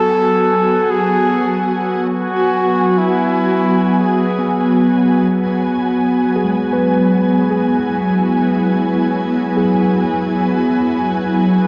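Spacious and serene, this free-time ambient excerpt, tuned to A4 = 441 Hz, sets a clear, close-miked flugelhorn melody with tape echo against an up-front ethereal, airy pad of detuned ensemble-chorused chords, while a worn, slightly out-of-tune tine electric piano fades in with echoing arpeggios in the background, all bathed in a 6.2-second cathedral reverb and warbling old cassette tape as the harmony moves from F#9sus4 to Eadd9/F# at 5.0 seconds, where the horn stops.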